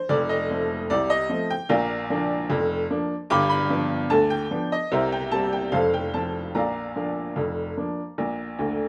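A bright, woody upright piano sits up front and plays alone through this lively, jaunty ragtime fragment in a straight two-beat metre, ranging from deep bass to high treble over chords moving from F to Bb, G7, C5, F and Bb, with a moderate studio reverb and a short fill at 8.6 seconds before the cut.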